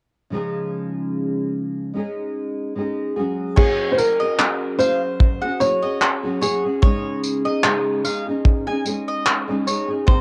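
A relaxed 74 BPM groove in 4/4 with a gentle sixteenth-note swing carries this sunny, carefree acoustic pop excerpt in Db major, opening with a double-tracked, fingerpicked nylon-string guitar whose classical tone and finger squeaks sit up front through a cassette-tape haze. At 3.6 seconds a cloth-damped, thuddy drum kit joins with tight kick, dark cymbals, handclaps and tambourine, alongside a round, double-strung mandolin picking high arpeggios and a woody, boxy upright piano carrying a short-sustained melody with audible action noise until 8.0 seconds. Light reverb and small-room ambience give the whole home cassette recording an intimate, homespun glow as the chords move from Dbadd9 through Gbsus2 to Dbsus2.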